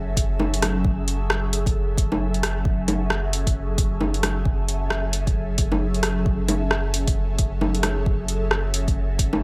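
Future garage at 133 BPM in F# minor, this nocturnal, rainy excerpt rests on a single F#m7 chord held by an ethereal, airy pad of detuned sawtooth and triangle voices, bright and slow to bloom, washed in ensemble chorus, phaser and its own reverb while it pumps under sidechain compression. Underneath, a round, soft dub sub bass holds F#1 up front with the same pumping, and from 0.2 seconds a tape-toned deep kick and a layered deep house kit of bongos, hi-hat and rim click enter, re-recorded in a small room and swung at 62% on the 16ths. Light reverb gives the whole piece a hazy, late-night sheen.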